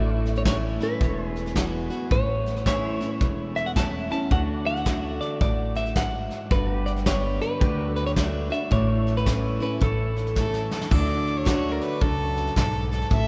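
Bathed in a vast, echoing cathedral reverb with a dulled top end, this sunny, heartfelt honky-tonk and classic country excerpt swings as a twangy, compressed clean electric guitar carries the melody over a bright, full-bodied picked steel-string acoustic guitar, a woody, thumpy upright bass, soft brush drums up front and a pedal steel guitar holding sustained chords with volume swells in the background, until a drum fill at 10.4 seconds leads into a clear, nasal fiddle solo from 10.9 seconds.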